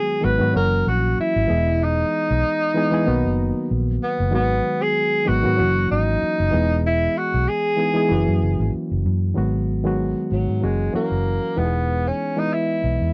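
Lush 1970s-style soul at 95 BPM in 4/4, with a gentle swing on the sixteenths and a smooth, cinematic mood, cut from a longer piece. A breathy tenor saxophone carries the melody up front, its tone marked by light vibrato and scooped notes, and it takes a solo from 9.4 seconds to the close at 13.1 seconds. Beneath it, a barky, reedy electric piano plays the accompaniment, lightly overdriven and heard through its built-in speakers. A vintage fingered electric bass enters at 0.2 seconds, dark, round and foam-muted, with an amped character that sits close in the mix. The harmony circles through G#m7, F#7, Emaj7 and Bmaj7, and the dry, close studio sound with little reverb keeps every part intimate and present.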